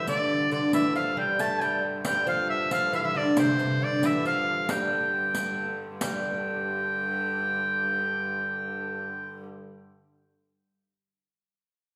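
Driving and mysterious, this medieval dance in 6/8 at 91 BPM sets a clear, up-front solo shawm melody over a delicate, fingerpicked lute on gut double strings and a nasal, reedy hurdy-gurdy drone, while a riq's dark jingles, close and dry, drop out at 6.2 seconds, the whole captured in a resonant recital hall.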